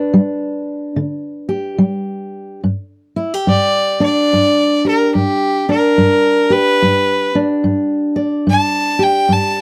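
This is a laid-back, rollicking stretch of acoustic country blues in G major, cut from a longer piece and moving at an easy 72 BPM in 4/4 with a swung eighth-note feel. A fingerpicked steel-string acoustic guitar carries the accompaniment from the first beat, its old strings giving a dark, woody tone that sits up front. Over the opening G chord the guitar sets the groove alone, and the harmony moves to a G5 at 2.6 s as the piece shifts into its second section. At 3.5 s a single bowed fiddle enters for its solo, taking the melody with a focused, slightly boxy voice and light vibrato, standing a touch louder than the guitar. The close, dry 1970s-style studio sound, touched by light reverb, keeps both players intimate and immediate.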